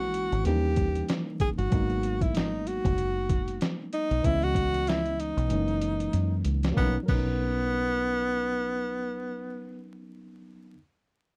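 A breathy, close-miked tenor saxophone with jazz vibrato carries the melody up front in this cool, swung jazz-hop excerpt at 95 BPM in B major, over a worn, slightly out-of-tune electric piano lightly overdriven through its built-in speakers, a dark, round, foam-muted fingered bass, and a compressed, pitched-down, sampler-style trip hop kit with a thumpy kick that plays a fill from 5.5 s and stops at 7.3 s, in a dry, close 1970s-style studio sound with vinyl crackle as the chords arrive on Bmaj9 at 6.8 s.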